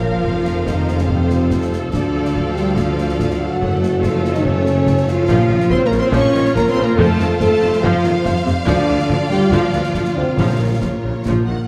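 A determined, swashbuckling cinematic adventure cue at 142 BPM opens at once with the orchestra: two lush, vibrato-rich violin lines, one of them set back behind the other, sit over a focused viola accompaniment and a mellow French horn section holding sustained chords, while a very quiet ringing harp spins arpeggios. The bass is built from a distant tuba, a studio double bass section with expressive portamento and a close cello section, and acoustic concert bass drum, snare and dark clash cymbals drive from 0.2 seconds. Articulate hard-mallet timpani strike in at 5.3 seconds and again near the close, all within a moderate scoring-stage reverb and a dark, warm production in this fragment of a longer piece.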